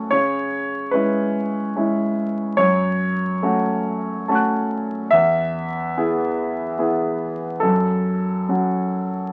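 Neoclassical minimalist piano in 3/4 with a rubato feel, intimate and reflective in mood. A solo concert grand carries the whole 9.3-second fragment, cut from a longer piece, its warm tone and deep bass sitting up front and spanning from E2 to F#6. The harmony moves through C#m, F#m, E and back to F#m, giving the passage a brief, circling shape. Light reverb lends a little space around the instrument. The sound has the character of a very old 78 rpm record, with vinyl crackle adding a worn surface to the playing.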